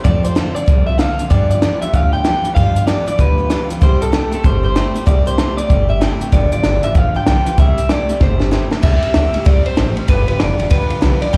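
Upbeat and rowdy, this swinging rockabilly cut, heard live through a club PA, sets a twangy, slightly broken-up electric guitar lead with warbly pitch drift and tape echo over a second electric guitar riffing low with slapback, a bright, full-bodied picked acoustic guitar with finger squeak in the background, a woody pizzicato upright bass, and a dark cocktail drum kit with a punchy kick up front that throws in a fill at 8.2 seconds.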